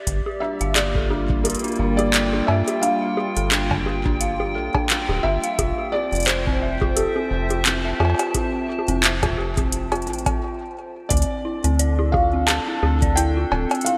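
A swung 87 BPM groove from an overdriven analog drum machine, with metallic hi-hats, bongos, cowbell and handclaps, and a deep electronic kick drives this glitchy, melancholic IDM piece in D minor, where a rubbery, resonant acid bass, a warbling lo-fi tape-like pad with sidechain pumping, an eerie, inharmonic FM synth bell playing arpeggios through phaser and delay, and a soft, boxy felt-muted upright piano carrying the melody all sit in a lush hall with bright 1980s-style digital polish, pausing briefly at 10.4 seconds before a new section arrives on a D7sus2 chord at 11.1 seconds.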